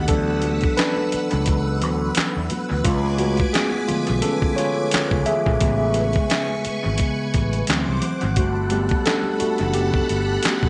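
A mellow tine electric piano leads this relaxed, sensual neo-soul and R&B excerpt, its clean, direct, up-front tone trailed by analog delay as it moves through D6/9, C#7b9b13, Amaj9, D7 and Gmaj9 harmonies. Behind it, a swirling vintage string machine sustains high sawtooth chords with slow attacks and long releases, bathed in ensemble chorus and phaser. A growly, amped fretless bass anchors the low end. A dusty sampler-style drum kit, gritty and compressed, enters at 0.1 seconds with a thumpy kick, fat snare, hi-hat and handclaps, sitting up front with its own analog delay. Very quiet, high-tuned congas with a thin skin join at 0.4 seconds, sounding distant in a large room, while the 16th notes carry a gentle swing through an echo-heavy mix with light reverb and a rolled-off top end.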